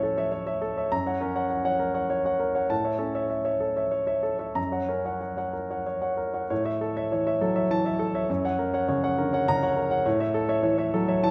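Neoclassical minimalist piano in A major, tender and intimate, moving in a rubato 3/4 at roughly 91-104 BPM. A solo grand piano carries the whole piece, its tone smooth and vintage, sitting up front in the mix and spanning from F#2 up to A#5. The harmony rocks between A and F# chords, giving the music a calm, circling quality. A first section gives way to a second at 6.5 seconds, though the same two chords continue to alternate through to the end at 11.3 seconds. The piano is set in a moderate concert hall reverb with a decay of 2.2 seconds, lending it a sense of space around its close, intimate sound, and the passage is cut from a longer piece.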